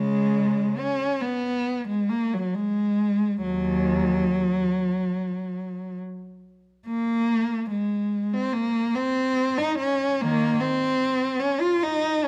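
A classical piece for unaccompanied cello, this short excerpt runs about 12.3 seconds and is cut from a longer work, carrying a yearning, lonely mood. The tempo hovers between 64 and 76 BPM in 4/4, but the rubato feel keeps the pulse free and expressive. A single bowed cello carries everything, ranging from Eb2 up to F4, with a warm tone, soft attacks, vibrato and sliding portamento between notes. The instrument sits up front, caught by close, detailed microphones that pick up a faint mains hum. A moderate recital hall reverb with an RT60 of 1.3 s gives the lone voice a sense of space around it.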